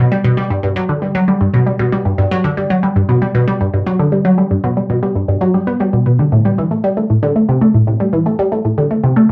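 In a straight 4/4 at 116 BPM, this luminous, cosmic ambient fragment in G major, cut from a longer piece, features a lone resonant blip pluck, a juicy, squelchy square-and-sawtooth synth sitting up front between G2 and B3 with phaser, tape echo and cassette tape colour, which shifts into a new section at 6.3 seconds inside a small, wet room on a homemade cassette recording.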